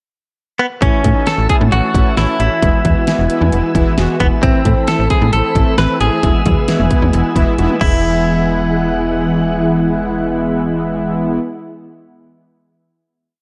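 A dark production with light reverb frames this short, complete synth-pop piece, whose mood is wistful yet upbeat in a straight 4/4. A clean, direct-recorded electric guitar opens with a short pickup at 0.6 s and carries the melody up front, its bright, twangy, compressed tone tracing catchy hook phrases. From 0.8 s a bold, fat analog synth brass with a sawtooth edge and chorus plays triad chords in eighths, while an organ-like ensemble string pad adds mellow, warbling sustained chords beneath. A snappy FM bass with a metallic attack drives the low end as a sequenced line, and a layered electronic drum kit with a punchy kick, fat snare, metallic hats and syncopated toms powers the verse before a quick fill. At 8.0 s the drums have stopped, and the guitar, brass, pad and bass ring out on a final hit.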